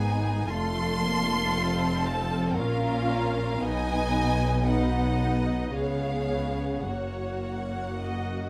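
A slow, serene romantic movement for string orchestra opens with the whole ensemble at once, moving in a rubato 3/4 at around 53-58 BPM in F# major. One violin section carries a smooth, distant melody, while a second violin section sings an expressive, soft-attacked line above it. Lush violas fill the middle, and cellos and double basses anchor a bass in rich vibrato as the harmony passes from F through A#m, B and C#7 to F#, all in light reverb within this brief passage cut from a longer piece.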